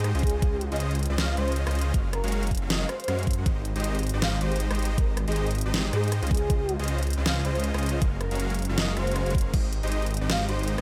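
A digital ambience surrounds this euphoric future bass excerpt in Ab major, moving at 158 BPM with a half-time feel and a gentle 16th-note swing. Huge, bright supersaw chords with a sub octave and cassette-tape haze pump against a thick, detuned saw bass with chorus, cycling through Dbmaj9, Gbmaj9 and Abmaj7, while a pop drum kit with a deep, overdriven snare, hi-hat, rim clicks and crashes plays throughout. A knocking, up-front electronic kick enters at 0.2 s and drops out at 9.6 s, and a soft, breathy flute-like lead with vibrato, 12-bit grit and dub echo floats in the background.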